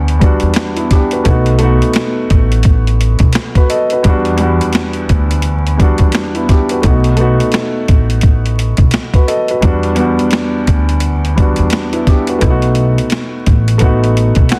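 Through a dense, heavily limited master with vinyl crackle and studio reverb, this gritty, dark boom-bap hip-hop excerpt in E minor rolls at 86 BPM with a swung 16th feel. A pitched-down, compressed sampler-style drum kit sits up front with a thumpy kick, high-tuned snare and hi-hat. A woody pizzicato upright bass on steel strings runs beneath. A mellow, intimate grand piano, up front and given a cassette-tape, filtered vintage tone with audible action noise and deep bass, voices Em7 and B7 chords from 0.0 to 14.6 seconds.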